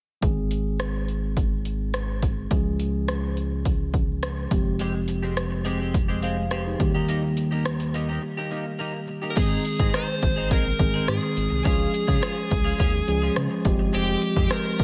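Driven by punchy, up-front 80s electronic pad drums with gated reverb, crash, metallic hi-hat, kick and rim click at a straight 105 BPM in 4/4, this uplifting, glossy 1980s-style pop excerpt in Ab major rests on a mellow tine electric piano and a smooth, dark sawtooth synth bass, adds a bright, twangy twelve-string electric guitar riff bathed in lush chorus and digital delay from 4.8 s, and after a break at 8.2 s brings in a dark, overdriven lead guitar melody with delay at 9.3 s, all in a light reverb.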